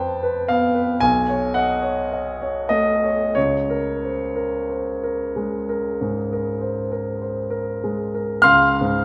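The rhythm moves in a flexible rubato over a slow 4/4 pulse, the time stretching and easing freely. This is a classical, impressionist solo piece for concert grand piano, luminous and serene in mood, heard as a short passage cut from a longer work. The warm piano sits up front, reaching from a deep bass up into the high treble, with an open character and long sustain that let each chord ring. The harmony drifts from an F5 chord at the start through a Cb9 at 1.0 seconds and a Db5 at 3.4 seconds, settling on Db at 8.4 seconds. A moderate concert hall reverb surrounds the instrument, giving the sound a spacious, gently glowing air.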